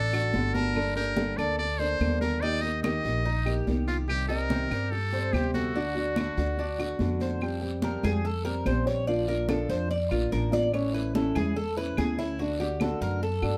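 A straight 4/4 pulse at 144 BPM drives this sultry, danceable Cuban son and guajira passage, cut from a longer piece. Up front, a trumpet with a metal mute carries the melody in a buzzy, thin and punchy jazz style until 7.2 seconds, while a thumpy, woody upright bass with steel strings holds the low end. A Cuban tres picks arpeggios on metallic double strings, some doubled at the octave, and takes a solo from 7.4 seconds as the chords move through Fsus2, Bb and A back to D. A small, fingerpicked nylon-string guitar fills in the accompaniment. In the background, ringing, high-tuned congas played with soft hands sit alongside close claves and a raspy, saturated guiro. The production is dark, with moderate studio reverb.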